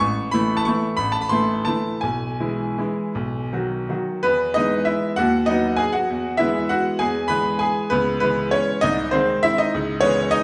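Wistful and bittersweet, this short cut from a longer classical piano waltz sways in three with a loose, rubato feel, its solo grand piano sounding bright and brilliant as it ranges from deep bass notes to high, ringing treble. The opening phrase gives way to a new passage at 4.2 s, where the harmony settles home before shading into a more melancholy minor colour around 7.9 s. The piano sits up front with a natural tone, yet the wet reverb of a large studio places the listener further back in the room.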